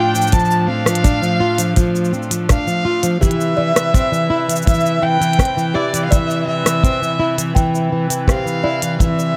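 A straight 83 BPM pulse of dark, tight acoustic kick and overdriven electronic cabasa, clicky hi-hat and rim click carries this pastoral, hopeful folktronica fragment, where an up-front fingerpicked flamenco guitar plays arpeggios with digital delay and plate reverb, a bowed solo violin sings a smooth vibrato melody, a distant, nasal gut-string quartet holds sustained chords over F6/A moving to Cmaj7, and a tinkling music box enters in the background at 3.2 seconds with its own delay and plate reverb.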